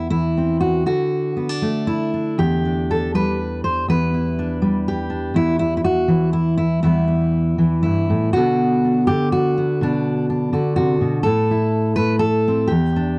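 Folk piece for solo fingerpicked steel-string acoustic guitar in E minor, wistful and reflective, moving in a rubato 3/4 around 122 BPM across this 13.2-second excerpt cut from a longer piece. The dreadnought sits up front with a dark tone and audible finger squeak, ranging from E2 to C5 as it drifts through C/E, Dadd9 and Em7, passes through a chordless stretch at 5.4 seconds, then settles on Em before turning to Bm at 8.4 seconds and Am. A moderate small-room ambience wraps the guitar in a dark, warm production.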